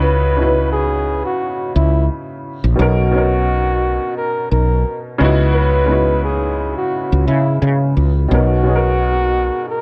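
A light reverb and a low-pass haze give this short lo-fi hip hop excerpt in C# dorian a nostalgic, melancholic cast, moving at 87 BPM with a gentle 16th-note swing over C#m11 and Bmaj7 chords. A mellow flugelhorn carries the melody with light vibrato in a jazz style, over a worn, slightly detuned upright piano softened by cassette tape. Beneath them, a growly, round fretless electric bass with analog chorus sits up front until 9.5 seconds.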